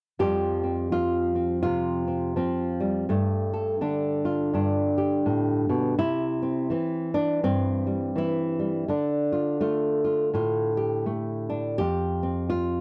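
Folk fingerstyle in a hopeful, gentle mood at 83 BPM with a swung eighth-note lilt: a solo fingerpicked nylon-string guitar, dark and full-bodied with audible finger squeak and a classical touch, sits up front in a dry, close 1970s-style studio sound, tuned slightly sharp to A4 = 441 Hz, and moves through Fsus2, Gsus2, C and Dm before returning to Fsus2 at 11.8 seconds in this short excerpt from a longer piece.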